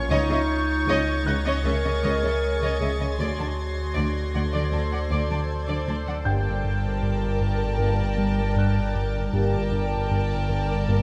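Cinematic suspense film score at 78 BPM in G harmonic minor, eerie and mysterious, resting on an up-front sine sub bass drone, a rich double bass section and a background cello section bowed sul tasto. A shimmering, warbling pad holds chorus-soaked chords, a worn baby grand adds faint high texture, and a clear, floating violin section carries the melody over a smooth-topped second violin line, while a mellow, distant clarinet and a close, high violin texture play only until 5.8 s. At 6.3 s a dark, roomy French horn section, an intimate viola section with light vibrato and a round, deep analog bass riff join, heard in a moderate concert hall reverb with a faint mains hum.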